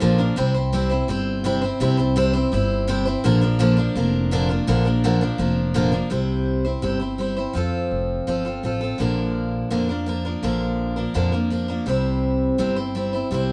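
Sunny and heartfelt, this honky-tonk and classic country excerpt moves at a brisk 167 BPM in C mixolydian, with a picked steel-string acoustic guitar carrying the accompaniment up front in a bright, full-bodied dreadnought tone with fresh strings. An upright bass sits lower in the mix, its pizzicato gut strings woody, dark and thumpy beneath the guitar. The pair play live together in a stone room with moderate reverb, moving from C to Bb in the first section before a second section at 6.1 seconds cycles through C, F, Bb and back to C.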